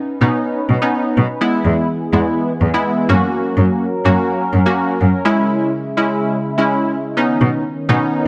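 A straight 4/4 pulse at 125 BPM drives this upbeat, euphoric pop passage in B major, cut from a longer piece and tuned to A4 = 438 Hz. A sweeping, resonant pad opens at 0.0 seconds with sustained chords, its detuned sawtooth and sine layers evolving through a slow-attack filter swell under a chorus sheen. From 0.2 seconds a punchy, funky polysynth comp sits up front, blending sawtooth and square waves with a fast-attack filter pluck and chorus. A single bowed cello carries the bass line with smooth, even vibrato and a warm tone. The harmony moves from Badd9 through E, F# and C#m before returning to Badd9 at 7.2 seconds, where a brief new section begins, all set in light reverb with small room ambience.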